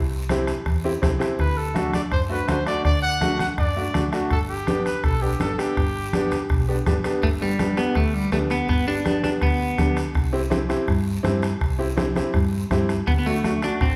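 This joyful, sunny cumbia excerpt opens on a dark, round hollow-body electric bass, joined almost at once by a bright, woody upright piano, a softly struck bombo kept close and dry, low-tuned ringing congas in the background and a raspy guiro, all moving at 164 BPM in a straight 4/4 in G major. At 1.4 seconds a bright trumpet takes an up-front solo in pop style with light vibrato, carrying the first half over chords that move from D on to G. At 7.2 seconds a clean, picked, twangy electric guitar steps forward with the melody, its compressed tone wrapped in spring reverb, and it returns briefly at 13.1 seconds as the harmony shifts back through C to D. The piano's open, long-sustaining tone sits prominently alongside the lead voices throughout. The whole band sounds like it is playing live together in one large studio room, with a generous, wet reverb giving the performance a lively, spacious glow.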